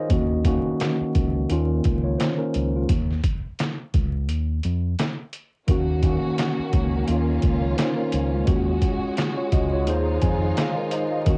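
Vinyl crackle, cassette-recording grit and light reverb frame this gritty, moody boom-bap hip-hop excerpt at 86 BPM in Eb dorian, where a mellow, clean tine electric piano, a round, punchy fingered electric bass with tube saturation and an overdriven, muffled, pitched-down sampler drum kit of thumpy kick, snare, hi-hat and handclaps ride a swung groove, joined at 5.7 seconds by a distant, lush bowed string section with vibrato and portamento.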